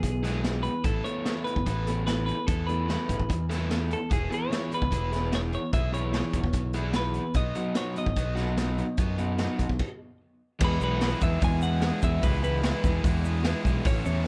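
Indie rock at 148 BPM in E major, carefree and upbeat, cut from a longer piece and recorded in a small room. A clean, compressed electric guitar carries the melody with a scooped tone and tape echo, while a raw garage guitar plays an overdriven riff from 0.2 seconds and a sludgy distorted guitar, with subtle chorus, sits in the background with its own picked riff. A growling fingered bass, bright and overdriven, sits up front alongside a raw garage drum kit with a punchy kick, medium-tuned snare, dark cymbals and a gritty, saturated sound that pumps with the room. The band moves from E through Asus2 and E6 to B, then breaks off in a stop from 9.8 to 10.6 seconds before returning to E for a new section. There a grainy egg shaker joins quietly in the background, and the drums drop out at 13.9 seconds, just before the other parts end.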